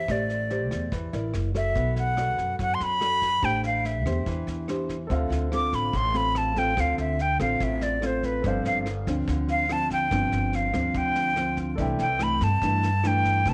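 A straight bossa nova groove at 144 BPM in 4/4 is carried by a dark, smooth brush kit with a tight kick and rim clicks, a woody, thumpy pizzicato upright bass on gut strings, and a full-bodied, thumb-plucked nylon-string guitar, setting a melancholic, intimate mood in a lightly reverberant studio. Up front, a breathy, close-miked silver concert flute plays an expressive, tongued, straight-tone melody with slapback echo over chords from Am7 and Bm7 to Dm7, where its solo begins at 5.1 s. At that moment a concert grand piano enters in the background, its action noise audible, before this excerpt settles on C69.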